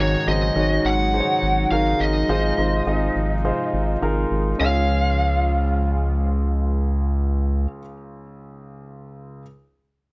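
This uplifting, hopeful pop excerpt opens with everything at once: an overdriven lead guitar picking out the melody up front, a clear concert grand piano with audible action noise and long sustain, a smooth detuned analog pad with chorus sitting in the background, and a round, deep analog bass carrying the low end. The guitar's electric bite stays in a high, narrow range, while the polished piano spans from deep bass notes up into the treble. A light swing on the sixteenths gives the groove a relaxed lilt. The harmony moves from a suspended Ab7 chord through Fm7 over Ab before settling on Db at 4.6 seconds, lending the passage a hopeful lift. The guitar, pad and bass stop at 7.7 seconds, and the intimate piano plays alone until 9.4 seconds, all in a light reverb.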